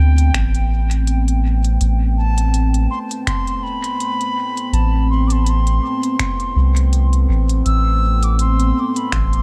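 Ambient dub with a spacious, meditative mood, cut from a longer piece and resting on a single Am7 chord with a gently swung 4/4 feel. A warbling, nostalgic tape-like pad holds dark sustained chords with chorus and reverb, while an airy, tongued wooden flute carries the high melody through dub echo and vintage 12-bit sampler grit, and a round, mellow sub bass sits up front. An organic electronic kit of finger snaps and smooth hi-hats, echoing in dub fashion, enters at 0.2 seconds, joined at 0.3 seconds by a deep analog kick re-recorded in a large room, all within a dry, echo-heavy mix.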